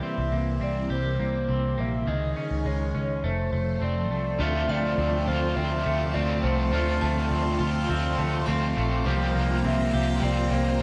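A straight, even 4/4 pulse carries this blissful, dreamy dream pop excerpt, cut from a longer piece. From the start, a swirling string machine holds sustained chords through ensemble chorus and phaser, a bright, twangy electric guitar at the edge of break-up picks arpeggios through lush chorus and digital delay, and a detuned, vibrato-laden lead sings a nostalgic melody with chorus and delay. A dark, round, foam-muted picked bass joins up front at 0.2 seconds as the harmony moves from C7 through Dbsus2 to F. At 4.4 seconds the music shifts into a new section on Dm7, where an overdriven electric guitar adds picked accompaniment with harmonic tremolo and lush chorus, and at 4.7 seconds a very quiet, inharmonic FM chime rings and decays high above. The production is dark and warm, with light reverb, and the passage settles on C7sus4 near its close.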